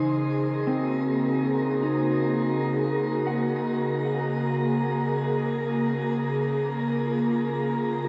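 Ambient piece in free time and Gb lydian, peaceful and serene, where an airy, breathy pad with chorus holds sustained chords up front, moving from Gbadd9 to Bbm7 at 6.1 seconds, while a dark, clean electric guitar plays fingered arpeggios through tape echo and a wind-like tuned noise texture hovers above, all bathed in a long shimmer reverb and the warbling pitch drift of worn cassette tape across this 8.1-second fragment cut from a longer work.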